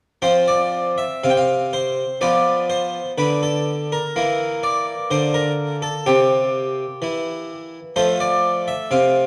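Flowing and serene, this short passage from a baroque-style classical suite movement features a solo harpsichord, plucked and brilliant in the French style with octave strings, sitting up front and moving with a gentle rubato from 0.2 to 9.3 seconds, all bathed in a lush recital-hall reverb and colored by the warbling pitch drift of worn old cassette tape.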